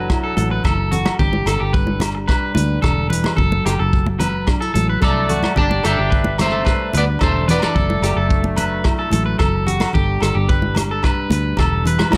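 Highlife guitar band excerpt with a danceable, warm mood, where a twangy, slightly broken-up electric guitar carries the melody in two phrases at 0.0 and 5.0 seconds alongside a distant, roomy trumpet with light vibrato, over a second picked electric guitar's arpeggios, a dark fingerpicked nylon-string guitar in the background, a round, foam-muted fingered bass, an up-front vintage drum kit with a punchy kick and rolled-off top, and ringing congas and far-off agogo bells, all moving between Dadd9/F# and Gsus2 chords.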